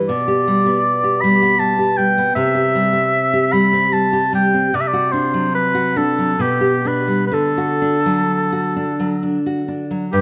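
A fingerpicked nylon-string guitar opens this romantic duo, joined almost at once by a solo oboe carrying the lyrical melody. The pace is unhurried in triple metre, with a rubato feel that lets each phrase breathe. The oboe sings in a classical style with light vibrato and a smooth top, its tone warm, while the acoustic guitar's fresh strings give the accompaniment a warm, fresh sound. Both instruments sit up front at an equal level, held in a light reverb. The harmony moves through G/B, C and D7/C, returns to G/B and settles on D as this passage, cut from a longer piece, closes at 10.2 seconds.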